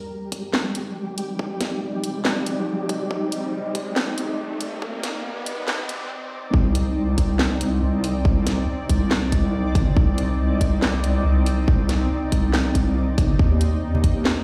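A heavy, resonant wobble bass with chorus drops in at 6.5 seconds, sitting up front with a tight, tape-warm electronic kick and a garage kit of handclaps, hi-hat and cracking snare in a brooding, half-time deep dubstep groove. Before the drop, a cloudy, evolving granular pad under a filter sweep blurs together with a flickering, detuned grainy texture while an electronic riser builds, ending at a short break at 6.1 seconds. Very quiet, saturated congas surface briefly at 13.9 seconds, and the mix carries the ambience of a stone room in this cut from a longer piece.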